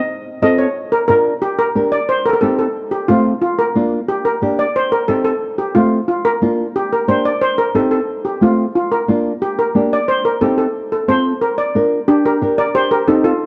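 A metallic, shimmering double seconds steel pan, struck with medium rubber sticks and heard up front in a boxy small room, opens this sunny, joyful Latin piece in Bb major at a brisk 180 BPM. A dark, thumb-plucked classical nylon-string guitar joins up front as accompaniment, while the pan carries the melody over a looping F, Bb, Gm, Cm progression. A moderate plate reverb with a 3.2-second tail wraps the warm, dark-toned production until the fragment cuts off at 13.5 seconds.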